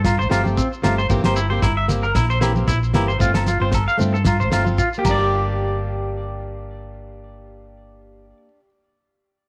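Danceable and bittersweet, this highlife guitar band excerpt in G minor at 114 BPM, with a light swing, sets a clean electric guitar's bright, twangy, tape-echoed arpeggios over a round, up-front hollow-body electric bass and a boxy fingerpicked acoustic guitar, while a damped 70s drum kit with a fat snare and dark cymbals, ringing agogo bells, a grainy shekere and thick-skinned congas fill the groove until they fall away by 5.5 s, leaving the guitars and bass in a light reverb.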